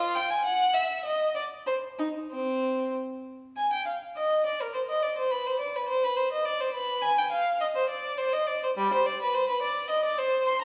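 A solo violin, clear and focused with close, up-front vibrato, carries this grave, solemn baroque-style suite movement in a rubato 3/4, its single bowed line ranging from G3 to C6 across a short fragment of a longer piece, set in the wet reverb of a recital hall.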